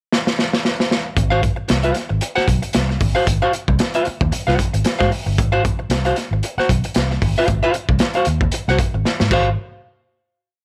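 Strutting and energetic, this short funk piece in Ab mixolydian at 114 BPM opens with a drum fill on a crunchy, saturated breakbeat kit with dark cymbals and a punchy kick, then from 1.2 seconds a foam-muted, round electric bass plays a syncopated riff with ghost notes while a clean, hollow-body archtop guitar scratches out sixteenth-note funk rhythm on an Ab6 chord, all in a small room before a final hit at 9.6 seconds.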